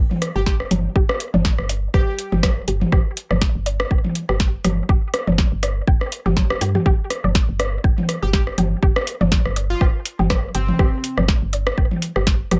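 A swung 122 BPM pulse drives this hypnotic, cool slice of minimal techno, built on a punchy, up-front electronic kick, a booming analog drum machine playing overdriven crisp snare and metallic hi-hats, and a second tape-warm drum machine adding congas, rim clicks and toms. Underneath, a soft, dark FM bass with a woody tone pumps with sidechain compression, while a squelchy, resonant blip pluck repeats a bright riff treated with chorus, tape echo and the same sidechain pumping. A catchy, full-bodied unison lead with tape echo states its melody briefly from 0.4 seconds and returns at 8.2 seconds, all in a dry, close mix.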